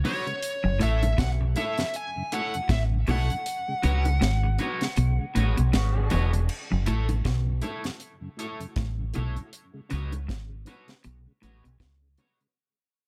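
A serious, laid-back roots reggae groove in F# minor at 79 BPM opens with a twangy, slightly broken-up guitar in lush chorus and dub echo, a dark tonewheel organ turning through a slow rotary speaker, a dry kit with a high-tuned snare and tight kick, and low-tuned, saturated bongos, while a biting, overdriven lead guitar carries the melody until 5.7 s. A compressed clean guitar riff and a round, up-front fingered bass settle beneath, and the kick drops out as the band hits accents from 3.5 s. A punchy, distant horn section adds a brief echoed second line before the track fades from 6.5 s over F#m7 and C#7sus4 in light reverb.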